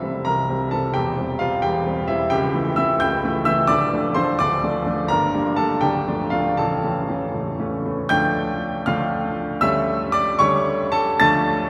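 A clear, polished baby grand piano sits up front across a range from A0 to A6 in this passionate, stormy romantic character piece in D minor, a brief classical fragment cut from a longer work that moves in a rubato 6/8 at roughly 73-89 BPM in dotted quarters, tuned to A4 = 442 Hz, with harmony passing from C through A7/C# to Dm and Gm before a new section begins at 8.1 seconds, the whole bathed in a cavernous cathedral reverb with a 5.5-second decay.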